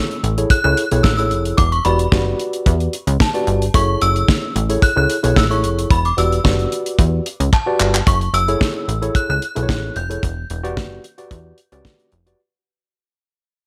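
Funky and danceable, this early-eighties boogie funk fragment, cut from a longer piece, moves at 111 BPM in F# phrygian, swaying between F#m9 and Em9 while a chiming, inharmonic FM synth chime carries the melody high above, thickened by ensemble chorus. A worn, slightly out-of-tune tine electric piano supplies clean accompaniment, a plucky sawtooth analog bass punches up front with a filter pluck and fast attack, and a damped 70s kit of kick, fat snare, hi-hat and handclaps sits dry and mid-forward under gated reverb in a small room. A drum fill at 7.5 seconds leads into the second section, where the track fades out from 8.1 seconds to its close at 12.4 seconds.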